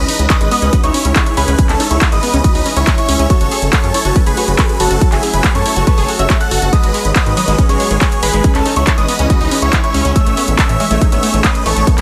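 This uplifting trance passage at 140 BPM in C# minor feels euphoric yet bittersweet, tuned slightly flat to A4 = 437 Hz and moving through C#m, F#m, G#m7, back to C#m and then Amaj7. A huge, detuned supersaw lead carries the melody, phased and compressed, with dub echo trailing its sustained notes. Beneath it, a gritty, saturated synth bass with a resonant, sync-edged tone anchors the low end, while a lush, detuned unison pluck spins arpeggios from 0.1 seconds. A warm piano with deep bass and short sustain plays a second line high in the background, and a dark, muted string section holds veiled, bowed chords with vibrato. A tape-warm analog drum machine supplies handclaps and hi-hats, and a layered, up-front electronic kick lands at 0.3 seconds. A pumping sidechain pulse breathes through the lead, piano, strings, bass, pluck and the drum machine's hats and cymbals inside a light reverb.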